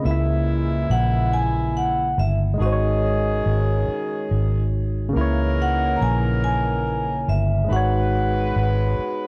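A vibraphone played with medium hard mallets carries the sultry, yearning melody, its metallic ringing tone shimmering with a slow motor vibrato and tape echo in a boxy small room. This brief excerpt, cut from a longer piece, is slow six-eight R&B at 47 BPM in C# dorian, moving through C#m6, G#7sus4 and C#m69. A barky tine electric piano supplies bright, lightly overdriven accompaniment through a combo amp, colored by a phaser, and slips in a short fill at 9.0 seconds. A mellow horn section punctuates with tight, smooth-topped stabs in pop style, doubled at the octave and trailed by tape echo. Beneath it all sits a vintage muted fingered electric bass, dark, round and punchy, placed up front in a dry, gritty recording with little reverb.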